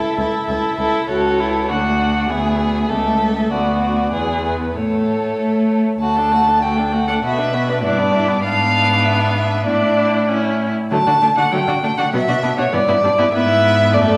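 Set in a straight 2/4 at 98 BPM, this spirited, lively classical-period movement for string quartet is a brief portion cut from a longer piece, opening in A major before moving to D major at 6.0 s. The first violin carries the melody with a rich, smooth tone and even vibrato, sitting up front yet slightly distant. The second violin plays a supporting line beneath it, expressive and coloured by portamento. The viola's focused, close-sounding accompaniment fills the middle, and the cello enters at 0.2 s with a clear, smooth, even bass that also sits forward in the blend. The harmony moves through chords such as a G#dim7 and an Asus4 resolving to A, all carried by a reverberant recital-hall acoustic with a church or concert-hall bloom.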